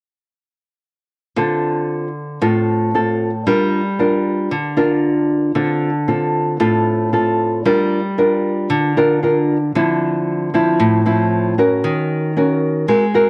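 A lone nylon-string guitar enters at 1.4 seconds, playing a melancholic, wistful bossa nova in D minor at 115 BPM in a straight 4/4. Its acoustic tone is warm, thumb-plucked, small and sits up front, moving between A2 and Bb4. The harmony rocks between Dm7 and Gm7 before shifting at 9.7 seconds to a new passage on Dm9 and then Ebm7. Light reverb and studio ambience surround the instrument, and the recording was captured on cassette tape. This short fragment, cut from a longer piece, ends at 13.3 seconds.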